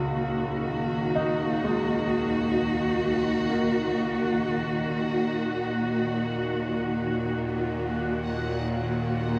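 A dark, lush cello section sits up front in this desolate, unsettling dark ambient drone, holding sustained bowed chords with expressive vibrato and a smooth top throughout the 9.4-second passage cut from a longer piece. Beneath it, a clear, slightly worn grand piano traces low-to-middle arpeggios that dissolve into a diffuse ambient delay. A tense, string-like synth drone with a sawtooth edge, a noise layer and vibrato fades in over the whole passage in the low register, its slow attack and long release adding a bright, restless undertone. Further back, a bubbling synth texture with random, resonant filter steps and detuned, chorused shimmer also fades in on a single high note. The whole is bathed in a huge, wet reverb that stretches every sound into a cavernous, haunted space, all anchored on a single minor chord.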